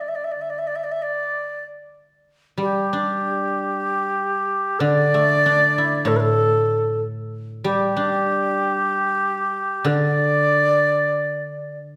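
Pastoral and graceful, this short excerpt of Chinese traditional chamber music moves at 94 BPM in a straight 4/4, with a bright, reedy bamboo xiao carrying the airy, tongued melody from G4 to E5. Beneath it, a guzheng played with fingerpicks offers mellow, silvery, ringing accompaniment in a lower range, both parts sounding up front from 0.0 to 11.8 seconds. A wet recital-hall reverb with a 1.4-second decay surrounds the pair, and the music shifts into a new section at 2.3 seconds.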